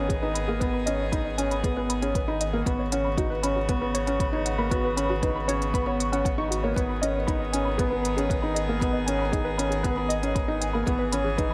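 Moving and melancholic, this excerpt of piano and strings electronica sits at 117 BPM in G# minor. A felt-muted upright piano plays a soft, intimate riff with audible action noise and delay, over a distant string quartet bowed sul tasto in floating, sustained chords, while a warbling, lo-fi pluck spins detuned arpeggios through chorus, delay and sidechain pumping. A round analog bass pumps on a deep G#1, and from 0.1 s a layered, tape-warm electronic kick and smooth electronic hi-hats carry the beat, all held in a moderate echo-chamber reverb.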